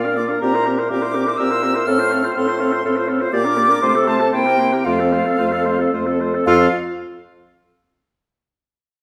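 All five winds of this stormy, urgent classical-period quintet movement in triple time begin together, with the airy flute carrying the melody high and up front with vibrato while a mellow oboe sings a second line beneath it. A bright clarinet and a soft-attacked French horn fill out the accompaniment over a warm bassoon bass, the phrasing pushed and pulled with rubato as the harmony moves from C7 toward F by 4.9 seconds. The ensemble sits back in a reverberant stone room, and the parts stop at 6.7 seconds as this fragment of a longer piece closes on an F5 chord.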